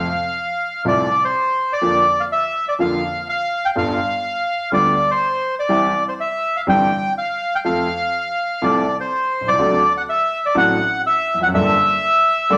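A rubato 4/4 pulse shapes this sultry, tense tango, cut from a longer piece, where a reedy, airy bandoneon carries the melody up front over a dark concert grand piano whose deep bass and long sustain fill out the accompaniment, both set in a wet studio reverb as the harmony moves from F through G7 and D7 to a closing Gmadd9.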